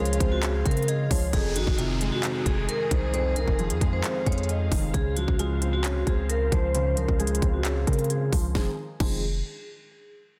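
A half-time trap beat at 133 BPM drives this melancholic, brooding hip hop excerpt in F phrygian, with an electronic kit of hard-clipped kick, sharp snare, crisp hats, handclaps and crash sitting up front over a deep, sine-like 808 bass that hits with a fast attack and decays. A metallic, ringing vibraphone played with hard mallets carries the filtered, delayed melody, joined only until 1.3 s by a hollow, woody synth lead with chorus and phaser tucked in the background. Underneath, a soft, felt-muted upright piano accompanies while a rich, bowed studio string section sustains the Dbmaj7 and Fm7 chords, as a filter sweep runs from 1.3 to 8.6 s and a downlifter falls away by 4.9 s, all inside a dense, heavily limited modern master with digital ambience.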